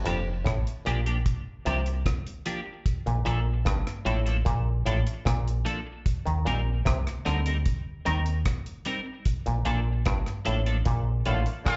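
A straight 4/4 pulse at 75 BPM anchors this meditative, serious roots reggae passage, cut from a longer piece, as a dry, tight-kicked drum kit of hi-hat, kick and rim click and a round, dark fingered dub bass sit up front beneath a twangy, overdriven auto-wah clav riff with slapback echo and a clean, compressed, picked electric guitar bathed in chorus and tape echo, moving through Gm7, Bbmaj7 and Eb6 before a band accent at 9.3 seconds and a vintage horn section with light vibrato arriving at 11.3 seconds, the whole live gig heard through the venue's PA in club reverb with a dulled top.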